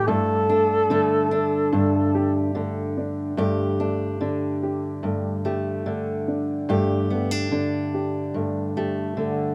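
A mellow duduk leads this short, hopeful folk excerpt at 72 BPM in a straight 4/4, its soft-attack, scooped notes and vibrato carrying the melody until 2.6 seconds and returning briefly at 9.2 seconds, sounding distant and roomy yet up front. Beneath it, a fingerpicked steel-string acoustic guitar with old strings gives a woody, dark accompaniment, while a dark upright piano adds gentle arpeggios around a Gsus2 chord. The dry outdoor recording has little reverb, leaving the trio's gentle blend close and intimate as the piece moves from its opening section into a second one at 3.4 seconds.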